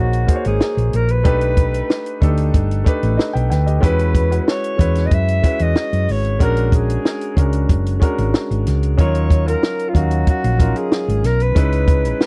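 Warm and smooth, this short excerpt of lush 1970s-style soul moves at 93 BPM in a straight 4/4, with a breathy, whispered alto saxophone carrying a mellow, vibrato-laden jazz melody that sits distant and roomy over a natural-sounding concert grand piano with deep bass, a dark, round hollow-body electric bass played with the fingers, and a compact cocktail drum kit of hi-hat, tight kick and high-tuned snare up front, all captured in a dry, close studio sound as the chords drift from F#6 through E69 and D#m9 to C#m7.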